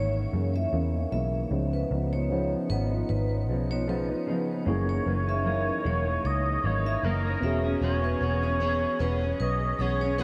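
Mellow and lonely, this swung indie bedroom-pop fragment sets a warm oboe melody with light vibrato against a ringing, metallic hard-mallet vibraphone line, both chorused and trailed by diffuse delay, over a picked steel-string acoustic guitar with audible finger squeaks, a dark, round, foam-muted electric bass up front, and a reedy, bright electric piano with fast tremolo that slips into the background at 4.7 seconds, all moving through chords from C#m69 to E6 under a filter sweep and a huge, dreamy reverb.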